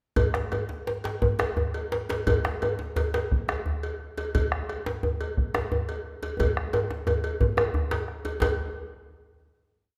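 Earthy and driving, this short, complete West African drum ensemble piece in 12/8 gathers pace from start to finish. A dark, close bombo sits up front beside a warm, deep, dry djembe, both keeping evenly spread patterns, while a metallic cowbell rings out its bell pattern from a distant, roomy space. A tight, cracking, saturated second djembe leads with phrases, and a drum fill arrives from 6.4 to 8.4 seconds, before the ensemble lands a final hit that rings into a recital-hall reverb.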